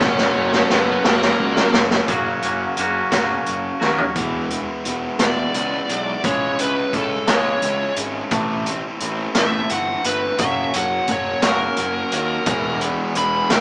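Quiet-loud alternative rock in 6/8, bittersweet and cathartic, played by a band live in one room with light reverb and a small-speaker sound. A gritty, boomy-kicked garage drum kit sits up front and opens with a fill, under a bright, thick fuzz guitar riff, a warm, amped electric bass, and a crunchy overdriven guitar kept in the background, while a clean, twangy electric guitar plays scooped arpeggios from 2.1 to 12.1 seconds. A dark, high-gain lead guitar carries the melody and returns at 5.2 seconds for a solo that runs to the end of this cut from a longer piece.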